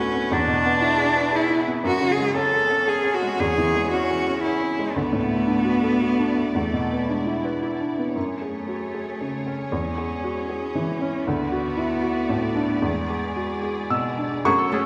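A rubato 3/4 pulse carries this reflective, longing neoclassical excerpt: a felt-muted upright piano gives mellow, intimate accompaniment up front beside an expressive bowed cello second line with vibrato and portamento, while a distant symphonic string section holds smooth sustained chords in a wet concert-hall reverb, and a lone viola and a ringing, fingerpicked harp arpeggio appear only at 14.5 s as the harmony cycles through F#madd9, C#m/E, D6 and E7.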